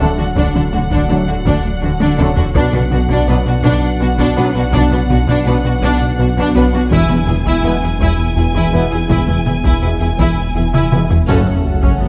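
Vast and relentless, this hybrid orchestral and electronic film cue moves in a slow 6/8, cut from a longer piece and built over a dark, warm production with the moderate bloom of a scoring stage. A rich, smooth studio violin section carries the melody high above a lush symphonic violin line in the background and a full viola accompaniment, while mellow, distant French horns and very quiet, close-miked trombones hold sustained chords beside a deep, moody ambient pad. Underneath, woody cellos and very quiet double basses share the low end with a rumbling, saturated detuned saw bass and a very quiet rubbery, wave-folded square bass riff, as a very quiet tine-like thumb-piano synth pluck spins arpeggios. A dry taiko ensemble struck with hard sticks enters at 0.4 seconds in the background, with fills near 2.0 and 10.7 seconds. The harmony moves from D through Bm and E to F#m, where at 11.3 seconds a band accent lands with a huge, dark sub drop.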